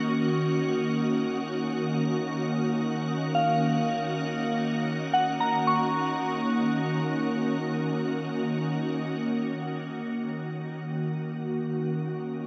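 Awash in a long shimmering reverb, this serene, reflective ambient excerpt drifts in free time in Eb minor, as an up-front, full-bodied organ-like pad holds sustained chords opening on Ebm7 beneath gentle, warbling FM bell arpeggios trailing into diffuse delay, while a barely audible evolving analog drone drops out at 9.7 seconds.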